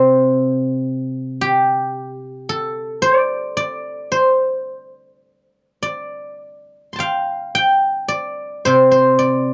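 The rhythm moves freely in rubato around a slow 55 BPM in 2/4, so the pulse feels loose and unhurried. This short passage of Chinese traditional music, cut from a longer piece, gives a solo guzheng the whole stage from 0.0 to 9.5 seconds, with a serene, flowing mood. Played with fingerpicks, the acoustic guzheng spans from C3 to C6, its silvery, ringing tone set up front in the mix. The close, dry sound recalls a 1970s-style studio recording, with only light reverb around the strings. The instrument is tuned slightly high, to A4 = 441 Hz.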